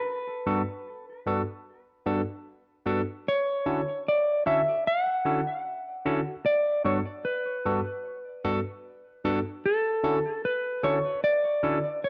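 Reggae at an unhurried 75 BPM in 4/4, this short fragment of a longer piece feels tender and sweet, with a gentle swing on the sixteenths and a home key of D major tuned to A4 = 443 Hz. A dark, clean, fingered electric guitar carries the melody from the start, sitting up front in a compact upper range and trailed by tape echo. At 0.5 s a bright, barky tine electric piano enters as accompaniment, lightly overdriven and colored by a phaser, its direct tone placed close to the listener across a lower span. The harmony alternates between Gmaj7 and Dmaj7 throughout a single section of about 12 seconds. A moderate spring reverb and digital ambience give the pair a soft sense of space around their otherwise intimate sound.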